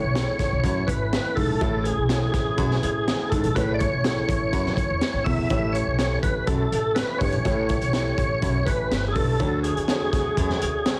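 A lightly overdriven tonewheel organ carries the melody up front, its chorus vibrato and slow rotary speaker giving the lead a full, churning voice in this danceable, uptempo 1960s-style soul excerpt at 123 BPM in A major. Beneath it, a crunchy breakbeat drum kit enters at 0.2 seconds with gritty, saturated hi-hat, tight kick and a high-tuned snare, its rolled-off top keeping the groove smooth. A pizzicato upright bass with gut strings adds a woody, thumpy low end, while a breathy baritone saxophone comes in at 0.6 seconds with a whispered, intimate riff of scooped notes and light vibrato. In the background, a dark, slightly detuned upright piano offers boxy, short-sustained accompaniment, and a second, percussive tonewheel organ holds clean sustained chords with key click through its own slow rotary speaker. The harmony moves from Amaj7 to A7 and settles on Dmaj7, all heard through light reverb and a heavily compressed, radio-like sound.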